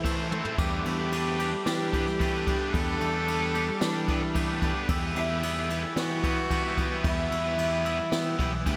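A dreamy, reverb-soaked mix opens this brooding, melancholic post-rock excerpt in E minor, moving at 111 BPM in a straight 4/4. Up front, a jazz brush drum kit sets a natural studio-room feel with dark cymbals, a high-tuned snare and a boomy kick, dropping a fill at 0.3 seconds, while a picked electric bass sits warm and direct beneath it. A bright, compressed overdriven electric guitar carries the riff through a lush chorus, joined in the background by a hollow-body overdriven semi-hollow guitar with a subtler chorus. Behind them, a clean, twangy fingered guitar and a bell-like glockenspiel struck with soft plastic mallets trace arpeggios through analog delay, and a very quiet granular cloud pad holds blurred, evolving chords. From 0.9 seconds a single distant bowed cello sings the melody with light vibrato and a nasal, earthy tone, also echoed by analog delay. The harmony drifts from Amadd9/E to Gadd9/E before settling on Em at 4.9 seconds.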